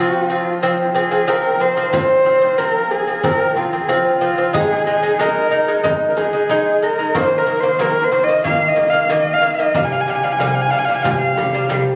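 Captured on a phone in the room and bathed in a wet concert-hall reverb with compression, this solemn, vast excerpt of Mongolian folk music moves at 92 BPM in F minor. A dark, husky horsehead fiddle carries the melody up front with vibrato and portamento, over delicate fingerpicked arpeggios from a gut-strung lute with doubled strings. A warm, nasal second horsehead fiddle holds a quiet F drone only until 2.0 s, and a frame drum played with hard hands enters at 1.9 s.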